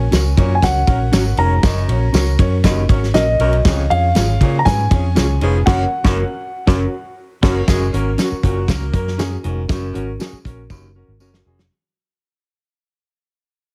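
Uptempo 1960s-style soul, warm and joyful, built on a punchy, up-front drum kit and a round, foam-muted electric bass, with a dark piano melody that plays until 7.1 seconds over boxy piano chords, clean guitar stabs in spring reverb, a distant jingly tambourine, a roomy baritone saxophone riff, a bright saxophone section in the background, a slightly broken-up guitar riff that enters with a band accent at 5.7 seconds, and a drum fill as the compressed, radio-like sound fades out.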